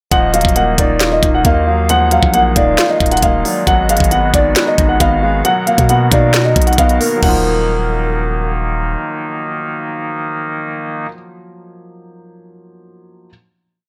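This is a dark and hard-hitting trap hip hop piece at 135 BPM with a half-time feel, built on a hook from 0.1 to 7.2 seconds that resolves into a final Ebmadd9 chord held from 7.2 seconds. A dark, boxy concert grand piano carries a looping melody through a low-pass filter, repeated like a sampled loop. Behind it, a hollow, woody clarinet-like synth lead with chorus, delay and vibrato adds a sparse counter-melody in the background. A felt-muted upright piano, intimate with audible action noise, plays a rising and falling arpeggio in eighths that lingers until 13.3 seconds. A chamber organ on a soft oboe reed stop, with chiff and tremulant, holds a sustained pad. Underneath, long sine-like 808 sub-bass notes follow the knocking kick of an up-front trap kit, with its sharp snare, crisp hats and fast hi-hat rolls, crash and toms, all in a dry sound.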